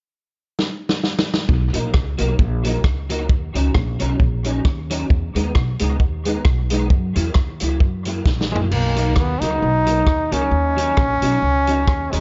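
A bright, up-front trombone with light vibrato and dub echo takes the melody at 8.5 seconds in this joyful, cheerful ska excerpt in B major at 133 BPM with a gentle swing, riding over a vintage drum kit with dark cymbals that opens with a fill at 0.6 seconds, a woody, thumpy upright bass, and a slightly broken-up, compressed electric guitar with ensemble chorus, all set in a small room with a rolled-off top.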